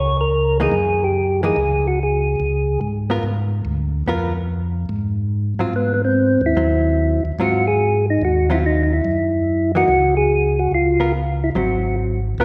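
A swinging, soulful soul jazz organ trio opens with two tonewheel organs, each played through a slow rotary speaker and sitting up front: a round, percussive upper voice carries the melody with third-harmonic percussion, while a mellow, dark lower organ with audible key click holds down the bass line. At 0.6 seconds a clean, hollow-body electric jazz guitar joins in accompaniment, its picked tone compressed and dark, placed quieter beneath the organs. The tempo is a brisk 144 BPM in 4/4 with a swung eighth-note feel, and the tuning sits slightly low at A4 = 438 Hz. The melody organ drops out at 2.8 seconds, leaving bass organ and guitar to carry the groove until the lead returns at 5.8 seconds. The harmony moves from Gbadd9 through Db and Ab to Gb7sus2, Db6 and Ab7, all set in the lush reverb of a church or concert hall in this short cut from a longer piece.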